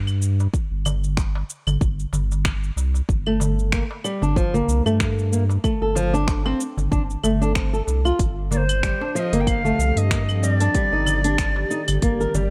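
A lightly swung groove of cabasa, claves, finger snaps and smooth hi-hat sits over a deep, layered electronic kick and crisp, hard-handed darbuka in the background, while a round sine sub bass with tube saturation and sidechain pumping holds the low end of this hypnotic, meditative organic downtempo excerpt. From 3.3 seconds a fingerpicked flamenco guitar plays up-front arpeggios with audible finger squeak, roughened by 12-bit sampler grit and tape echo. A breathy, reedy cedar flute carries the melody with vibrato and chiff from 8.5 seconds, and an ethereal detuned pad with chorus, phaser and reverb drifts in behind it at 9.3 seconds.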